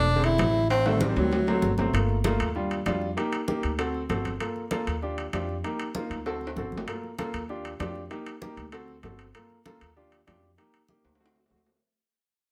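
A breathy tenor saxophone opens this fiery, driving Afro-Cuban jazz excerpt, sitting close and up front with soft attacks and scooped notes, but its melody lasts only until 1.8 seconds. Throughout, a clear, worn concert grand piano carries the accompaniment through chords such as Gm7, Ebmaj7, D7 and Fadd11, its deep bass register giving the harmony weight. An up-front, woody upright bass plays pizzicato on steel strings beneath it, while low-tuned congas with a thick skin and ringing, metal-shelled timbales with a vintage, band-limited tone keep the straight 4/4 pulse moving at 194 BPM. Drum fills arrive at 0.7 seconds and return later, and the whole passage fades out from 1.9 seconds onward. A moderate large studio reverb surrounds the band, and the clip is cut from a longer piece.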